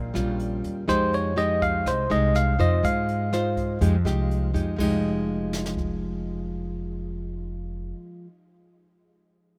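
Smooth and wistful, this bossa nova excerpt in F minor moves at 123 BPM, with fingerpicked nylon-string guitar sitting up front over a woody, growly pizzicato upright bass. A clean, bell-like tine electric piano carries the melody from 0.9 to 3.8 seconds, while a brushed jazz kit with dark cymbals and a boomy kick sits lower in the mix and drops out at 5.9 seconds. The chords drift through Eb9, Fm9 and Ab6 in a dry, intimate sound.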